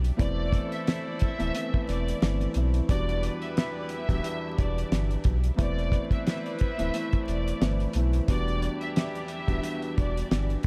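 A cloth-damped drum kit and a deep sub bass with an octave open this reflective, moody boom-bap hip-hop excerpt, set over a bed of vinyl crackle and light small-room ambience. The drums sit up front with a fat snare, tight kick and hi-hat, their thuddy, dry character rolled off at the top. The bass is full and sustained with a fast attack, anchoring the low end. From 0.2 seconds a dark baby grand piano adds mellow, vintage accompaniment with long sustain and a cassette-tape colour. A rich violin section carries the bowed, vibrato-laden melody through tape echo, while a loose horn section with octave doubling places soft stabs further back in the mix. The harmony alternates between Amadd9 and Em7 across the whole passage, keeping a swung, brooding feel until the piece is cut off at 10.7 seconds.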